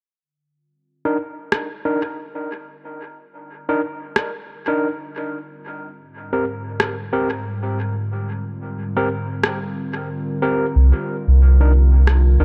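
A gritty, barky overdriven tine electric piano, heard through a combo amp and shaped by a low-pass filter, plays up-front stabs steeped in dub echo in this hazy, deep ambient dub excerpt with a swung 4/4 feel. Beneath it, a warbling, detuned, nostalgic tape-like pad fades in with sustained chords moving from C7(no3) to Abmaj7, colored by chorus, phaser and its own reverb, while an electronic rim click, also sent through dub echo, sits close in the mix. A round sine sub bass arrives at 10.8 s, and the echo-heavy mix rests in light digital ambience.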